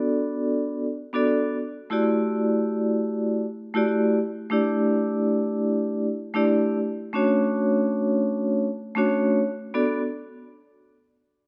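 A metallic, ringing solo vibraphone, played up front with medium hard mallets and a slow motor vibrato, carries this gritty, reflective hip hop excerpt at 92 BPM with a swung 16th feel in B minor, moving through Bm7, Em11, A7sus4 and Dmaj7 with a slapback echo and filtered edges until it stops at 10.0 s, all set in a dark production with echo chamber reverb and small room ambience.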